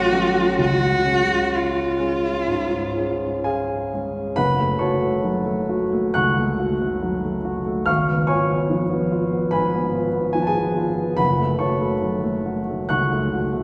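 A warm, bowed cello opens this solemn, melancholic romantic classical fragment, singing an expressive melodic line with vibrato and portamento in a narrow span from E#4 to F#4 before falling silent at 3.5 seconds. Beneath it, a dark, mellow baby grand piano supplies the accompaniment across a broad register from F#1 to F#6, its long sustain carrying on alone through to 13.6 seconds. The music sits in F# minor with a slow, rubato 4/4 pulse drifting between 58 and 73 BPM, tuned to A4 = 436 Hz, and its harmony moves from F#m/A and C# to a passage built on F#m, C#7/G# and a return to F#m. Both instruments sound close and up front, yet the listener is placed further back in a concert hall whose wet reverb lingers for about 2.5 seconds. Cut from a longer work, the passage leaves an impression of grave, melancholic sorrow.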